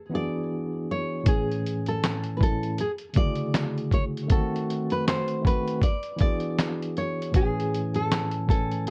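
A swung 79 BPM lo-fi hip hop groove in A major, dreamy and nostalgic, brings in a muffled, pitched-down sampler drum kit with thumpy kick, medium-tuned snare, hi-hat and handclaps at 1.3 s beneath a fingerpicked, full-bodied nylon-string guitar melody and a clean tine electric piano that sounds as if played through built-in speakers, both softened by a low-pass filter, over chords moving through E9, Amaj7, Dmaj9#11 and D#dim7 in a dark mix with light reverb, cut from a longer piece.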